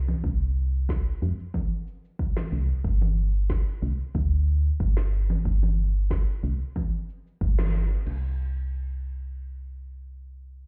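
A round, dark FM bass opens this hypnotic, warm slice of organic downtempo at 92 BPM, joined almost at once by a deep, up-front electronic kick. Produced, layered deep house percussion of cabasa, congas, crash cymbal and a woody snare sits well behind, with the whole band landing an accent at 7.6 seconds. The mix sounds muffled, as if heard through a wall with club reverb, and after the drums drop out the bass carries on alone until 10.6 seconds.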